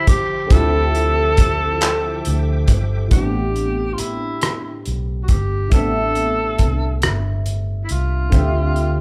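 A slow six-eight R&B groove from a cloth-damped, thuddy drum kit with handclaps, hi-hat, kick and rim click anchors this yearning, sultry fragment, where a breathy, intimate tenor saxophone carries the melody over a barky, lightly overdriven electric piano with phaser, a dark, foam-muted fingered bass and a reedy tonewheel organ whose fast rotary speaker colours its sustained chords in the background until 3.1 seconds, the band playing together in one room with light reverb.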